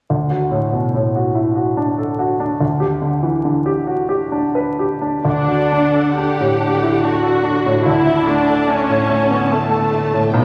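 Classical, a romantic movement for piano and orchestra in D major, lyrical and passionate, moving at a slow, rubato 3/4 pace and cut from a longer piece. A clear, up-front baby grand carries the melody alone until 5.3 seconds, when a lush bowed string section enters: expressive violins sing high above, a focused viola section sits close and prominent in the accompaniment, and smooth, distant cellos hold the bass in the background. The sound is wrapped in a wet scoring-stage reverb with a vinyl crackle, and the harmony rests on D throughout, shading through G and A over that bass.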